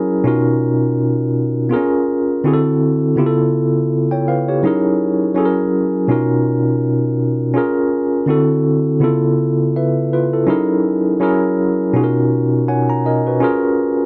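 A moderate studio reverb gives this short R&B passage a smooth, late-night atmosphere, with a clean tine electric piano placed up front through a combo amp. The electric piano plays alone for the full 14.1 seconds, carrying a medium tremolo that adds a shimmer as it ranges from B2 up to A#5. The tempo sits at a relaxed 82 BPM in 4/4, with a light swing on the sixteenths and tuning at A4 = 442 Hz. The harmony cycles through lush extended chords, moving from Bmaj9#11 through Bbm7, D9, Db7alt, Gb13 and Gb7 before returning to its opening chord. Near the close, a short electric piano fill arrives at 12.3 seconds, and the passage ends on Bbm7 as it is cut from a longer piece.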